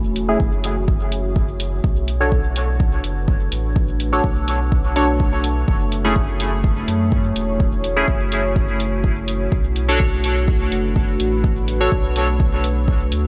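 Dub techno in a hazy, deep mood, this cut from a longer piece moves in a straight 4/4 pulse and alternates between F#m7 and Bm7 chords throughout. A dark, moody ambient pad of detuned sawtooth unison with a sine sub octave holds sustained chords under chorus and its own reverb, its slow attack and long release giving the harmony a soft-edged glow. Beneath it, a round, mellow sine sub bass anchors the low end, and both the bass and the pad pump with sidechain compression. A juicy, warbling vintage polysynth of square and sawtooth waves plays bright, resonant stabs from 0.3 seconds, filter-swept and sitting up front, dressed in chorus, phaser, cassette tape colour and dub echo. The layered electronic kick drum lands deep and tape-warm, while the hi-hat sits forward in the mix, both re-recorded in a small room, and the whole dreamy mix is soaked in a huge ambient reverb tail.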